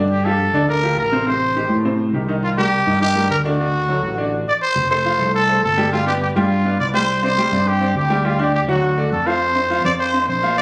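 Fiery and danceable, this short salsa excerpt drives forward in a straight 4/4, with a raspy, growling trumpet carrying the solo melody up front from 0.1 seconds, its bright pop-style tone touched with light vibrato. Beneath it, a brilliant, woody upright piano with short sustain supplies the accompaniment while a dark, round and punchy fretless electric bass sits up front, moving through minor-seventh and suspended chords before settling on an open F5. The sound has the feel of a phone recording made in the room, with light club reverb and compression giving it a lively, close-up roughness.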